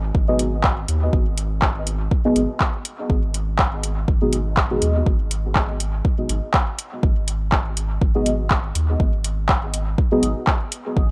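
A deep, mellow chord stab carries this hazy, meditative dub techno excerpt. Its dark, detuned tone sits up front, colored by chorus, phaser and dub echo, and sidechain pumping makes it breathe against the beat. It enters at 0.3 seconds and holds a single G#m7 chord in G# minor between B3 and D#5, each hit striking quickly and then decaying. Beneath it, a round, soft sub bass built from triangle and square waves sustains between G#1 and D#2 and pumps with the sidechain as well. A layered electronic kick drum anchors the 122 BPM pulse in 4/4 with a 55% swing on the sixteenths, while a vintage analog rhythm box adds handclaps and metallic hi-hats, re-recorded in a small room and sent into dub echo. The mix is dry, with little reverb, and this cut from a longer piece runs to 11.1 seconds.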